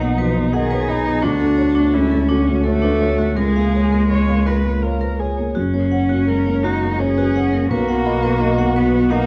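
Hopeful and tender, this neoclassical excerpt for piano and strings drifts at a rubato 85 BPM in 3/4, with a rich, even cello carrying the second line up front, a felt-muted upright piano giving a mellow, intimate accompaniment with audible action noise, a focused viola, and a double bass that adds expressive portamento, all three string parts bowed by single players with vibrato, while a metallic, ringing vibraphone spins arpeggios through a slapback echo over chords moving from B to Dmaj7, A#m7/C#, F# and back to B, wrapped in light reverb and a dark, warm production.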